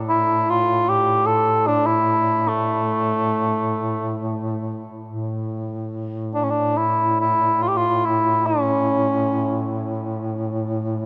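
A low duduk drone on A2 opens this short fragment of a Caucasian folk lament, with the dark cor anglais joining almost at once to carry the melody. The mood is solemn and mournful, moving in a slow, rubato 3/4 at roughly 65-76 BPM in A major. The duduk is close-miked and up front, its tone warm with folk-style vibrato, while the cor anglais sings in a classical manner between A3 and A4 with a light vibrato and a smooth top. A cathedral reverb with a long 6.0-second tail surrounds the pair, giving the dark production a sense of vast, hallowed space. The melody falls silent at 9.6 seconds, leaving the drone to sound until the fragment ends at 11.1 seconds.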